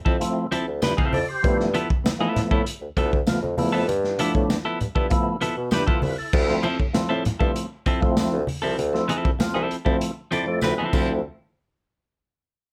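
A straight 4/4 funk groove at 98 BPM carries this cool, sly excerpt, where a crunchy, punchy breakbeat kit with dark cymbals drives a mellow bassoon bass line, clean picked electric guitar, lightly overdriven tonewheel organ stabs with key click, chorus vibrato and slow rotary speaker, bright low-tuned congas and a jingly background tambourine over G13, with an organ fill from 10.0 s and a drum fill at 10.6 s leading into a Dm9 before the cut.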